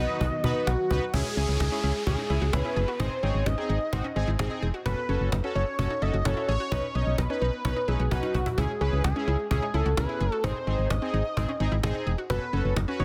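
Cool and melancholic, this 129 BPM synth-pop excerpt in C# minor pairs a thick, detuned unison lead with delay over bold, nasal analog synth brass, a punchy, round FM bass up front and a woody cajon with hard hands, while a very quiet vintage string-machine cello chord ends at 1.1 seconds as a chorused, delayed analog pluck arpeggiates in the background, an electronic downlifter sounds until 4.9 seconds, and a drum fill at 8.1 seconds leads the progression of C#m, G#, F#m and Badd9 back to C#m, G# and F#m in a dense, heavily limited mix with light reverb.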